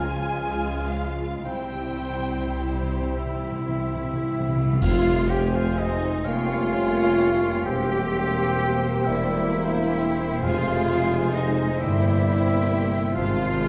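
A dark, warm orchestral recording in a reverberant recital hall carries this melancholic, solemn excerpt of a slow romantic movement in F minor, moving in a rubato 6/8 at roughly 34-45 dotted-quarter beats per minute. Lush bowed violins sing the vibrato-rich melody over second lines from pure flute, a vintage-toned oboe, a very quiet second violin section and a distant clarinet that drops out at 4.4 s, while dark violas and a soft-edged bassoon accompany, mellow horns and very quiet trombones hold sustained chords, and clear, intense double basses with distant cellos anchor the bass. Hard-mallet timpani with a crisp fill from 1.5 s join dark cymbals and bass drum, and at 4.8 s a band accent brings in background trumpet stabs and a roomy tuba as the harmony settles on F minor.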